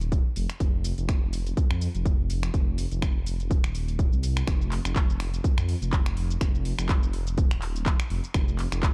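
A dark, detuned sawtooth bass opens this afro house track at 124 BPM, rumbling deep in the low end with a beating unison tone and sidechain pumping that gives it a breathing motion. An electronic afro-pop kit plays from the start with finger snaps, handclaps, a shaker and metallic hi-hats in a small room ambience, set back behind the bass. A punchy, layered electronic kick arrives at 0.1 s, overdriven and placed up front with a touch of room sound. The groove swings its sixteenths in a steady 4/4, and the mood feels spiritual and warm within a dark, dry production. A drop arrives at 4.5 s and carries the passage until it is cut off at 8.9 s, as this section is taken from a longer piece.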